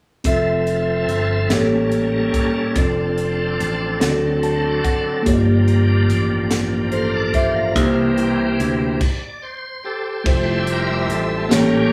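A bright, shouting tonewheel organ with slow rotary speaker and chorus vibrato holds sustained chords up front through this uplifting, hopeful slow gospel passage in 6/8, then takes a solo from 10.3 seconds as a warm, bowed string section enters quietly in the background. Mellow, clean tine electric piano carries the accompaniment with a fill at 4.0 seconds, over a growly, punchy picked electric bass and a tight, dry, airy, polished funk drum kit with bright cymbals and a high-tuned snare, the band stopping briefly at 9.0 seconds. The group sounds like a live band in one room, set in wet studio reverb, in a short cut from a longer piece.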